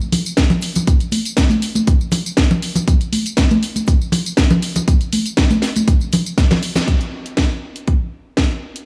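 A punchy, layered electronic kick drum sits up front in this short nu-disco clip, arriving at 0.4 seconds and carrying a sensual, groovy pulse in straight 4/4. Around it, a produced house drum kit supplies a cracking snare, warm hi-hats and tambourine, also placed close in the mix. Cabasa and congas add an acoustic, close and dry layer with hard hands until 6.9 seconds. A drum fill runs from 6.4 to 6.9 seconds with a band accent at 6.8 seconds, and the music moves into a new section just after. The sound is gritty, with a small-room feel, light reverb and a touch of digital ambience, and the clip is cut from a longer piece.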